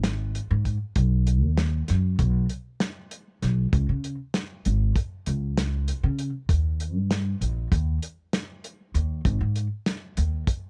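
Bright and driving, this short excerpt of progressive instrumental band music moves in 9/8 at 195 BPM counted in eighths, with a straight feel in B major. A pizzicato upright bass with woody, thumpy gut strings sits up front from 0.0 s, ranging from G#1 to C#3. Beside it, a dry, muffled soul drum kit of hi-hat, tight kick and medium-tuned snare has a lo-fi, rolled-off top, and both parts are captured by close, detailed microphones with little reverb.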